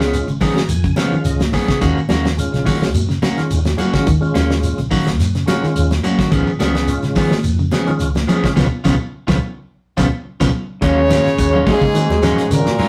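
A slightly broken-up electric guitar jabs out picked stabs across this driving, defiant afrobeat excerpt at 107 BPM in Eb minor, cut from a longer piece. Underneath, a round, dark hollow-body bass and a damped 70s kit with a fat snare and tight kick hold a straight 4/4. A grainy shekere sits far off in a large room, and ringing, high-tuned congas played with soft hands stay in the background. A clean picked guitar spins arpeggios, while a lightly overdriven tonewheel organ with key click, chorus vibrato and a slow rotary speaker opens with a fill at 0.1 seconds before settling into accompaniment. The chords move between Db7 and Ebm7, and a band accent from 8.6 seconds plus a drum fill at 9.7 seconds lead into a new section at 10.8 seconds on Ebm9, where a close-miked trumpet with light vibrato takes the melody over a punchy, roomy trombone with scooped notes and a bright bass trombone carrying tape echo. 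A wet studio reverb and a rough rehearsal-room sound frame the performance.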